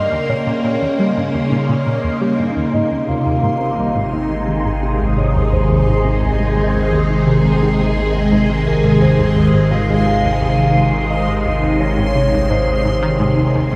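This excerpt opens on a bright, swirling string machine holding sustained chords up front, drenched in ensemble chorus and phaser. Beneath it, a tight, nasal sequenced synth drives a low riff with a filter pluck and delay, tucked into the background. Above them, a soft octave-layered lead of round triangle and sine tones carries a melody with vibrato, chorus, phaser and delay, while a resonant, bubbling texture of random filter steps sparkles high overhead in its own built-in reverb. At 3.9 seconds an evolving analog drone arrives on a low Ab, its pulse-width modulation adding slow-moving depth. This is hypnotic, cosmic space music at 86 BPM in a straight 4/4, shifting from an Eb7 chord to Ab at 2.7 seconds, and the whole mix is soaked in a huge, dreamy reverb with a 7.7-second tail.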